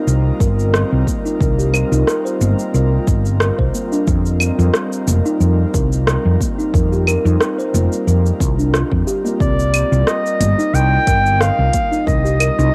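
A breathy, detuned pad with chorus and sidechain pumping and a soft, woody kalimba arpeggio through tape echo open this mystical organic downtempo excerpt in C minor at 90 BPM with a gentle 16th-note swing, joined at once by a growly, up-front fretless electric bass that pumps with the pad, a crisp tape-softened kit of cabasa, claves, hi-hat and rim click, and a punchy overdriven electronic kick, all moving from Cm7 to F5 and back, until a smooth, mellow clarinet enters at 9.4 seconds with an up-front melody colored by cassette tape and tape echo, the whole set in light digital reverb with a lo-fi home-cassette character.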